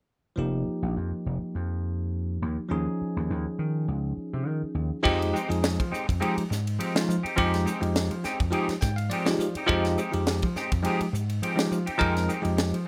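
A barky, bell-like tine electric piano with phaser opens this driving, intense jazz fusion excerpt at 103 BPM in 4/4 with a light sixteenth-note swing, sharing the opening from 0.4 s with a punchy, amped slap bass over F9sus4 and Eb9sus4 chords in F minor. At 5.0 s the harmony settles on Fm9 in F dorian as a bright, picked clean electric guitar adds stabs through ensemble chorus and slapback echo, and a crisp, polished drum kit with a high-tuned snare, tight kick, hi-hat, ride and crash cymbals joins just after in an airy studio room. The piano plays a fill at 8.5 s, and light reverb surrounds the up-front keys, bass and drums.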